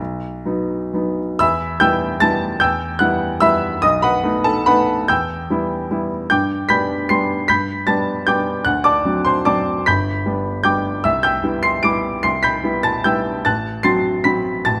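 A flexible, rubato waltz in 3/4 drifts between 123 and 159 BPM in this brief classical excerpt in E minor, its mood wistful and nostalgic. A solo baby grand piano carries the whole piece, sitting up front with a clear, natural tone and short sustain, reaching from G1 down low to D7 at the top. After a short opening on B, the music settles into a longer section at 1.4 seconds that moves from E minor through B7 back home, then brightens toward G major and D7 before reaching Cmaj7 and closing on F#dim/A at 13.4 seconds. Close, detailed microphones capture the instrument intimately, while a moderate recital hall reverb lends the sound a gentle sense of space. The fragment is cut from a longer piece, ending at 14.8 seconds.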